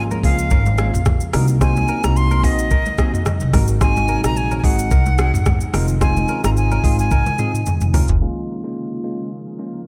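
Lightly reverberant and softened by a low-pass filter, this sultry, hypnotic afrobeats fragment in Bb minor sways at 109 BPM with a lilting swing, as an airy silver concert flute with vibrato and tape echo carries the melody over bell-like tine electric piano, a faint ethereal pad, woody pizzicato upright bass, a twangy chorused clean guitar riff tucked in the background, a knocking, up-front drum kit with smooth hats and very quiet ringing congas, before a drum fill at 7.1 seconds leads into a filter sweep from 8.2 seconds where the piano and pad linger on Bbm7.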